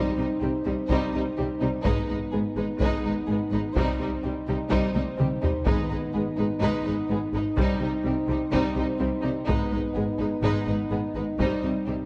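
Moderate scoring-stage reverb surrounds this dark, heroic excerpt of epic orchestral film score, where an up-front French horn section holds warm sustained chords over lush bowed strings (a soft-attack violin melody in the background, a smooth second violin line, rich violas, expressive cellos and focused double basses), while close, dry taiko with hard sticks drive from 0.9 s, play a fill at 5.0 s and are joined by a brief timpani entry at 5.7 s, over chords alternating between Cm and G#m.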